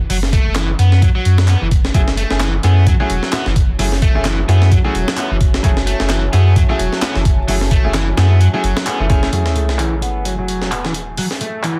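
Breakbeat at 130 BPM in F# minor with a swung 16th feel, this gritty, energetic cut opens on F#m7 with a thick, saturated sub bass up front, a thumpy, sampler-style break with a high-tuned snare, and an overdriven electric guitar riff coloured by tape echo and a low-pass filter, with layered electronic handclaps slipping in behind them in the background. A clear baby grand piano adds intimate stabs with audible action noise from 1.9 s, and a dark, detuned analog pad with chorus and sidechain pumping joins at 3.7 s. At 9.3 s the bass drops out as an electronic sub drop hits and a filter sweeps across the guitar, all under a dense, heavily limited master with vinyl crackle.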